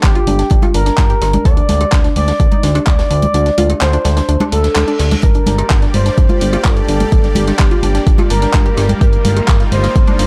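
This dreamy, emotional progressive house piece opens in G minor at 127 BPM with a smooth, expressive synth lead carrying the melody. Its sawtooth tone is dark with vibrato, chorus and delay. Beneath it, a round, wave-folded analog pluck spins arpeggios, and a fat, saturated analog bass pumps against a deep, tape-warm electronic kick that sits up front. A layered deep house kit adds handclaps and hi-hat, and a very quiet natural acoustic kit adds hi-hat and snare, while bright, close congas and cowbell stay in the background. The kick drops out at 3.3 seconds, and at 4.6 seconds an electronic reverse cymbal builds toward 5.2 seconds. There the kick returns and a lush, unison supersaw pad enters with slow-attack sustained chords. The mix is dry, with little reverb, and the harmony moves between G minor and a closing Ebadd9/G in this excerpt.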